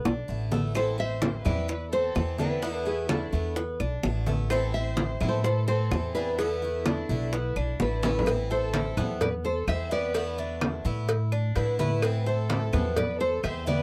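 Sultry and warm, this Cuban son and guajira excerpt opens with a drum fill as a growly, up-front upright bass, ringing low-tuned congas, round bongos and cowbell, and woody background claves set a straight groove. Over them, a double-strung Cuban tres plays metallic arpeggios and a picked swing-style acoustic guitar adds bright, boxy accompaniment. From 0.8 s, a fingerpicked classical nylon-string guitar with old strings carries the melody while a soft, floating violin section bowed sul tasto adds a second line over harmony that alternates between E7sus4 and Amadd9, all in a close, dry 1970s-style studio sound with light reverb, and a second fill at 8.0 s leads into the next section.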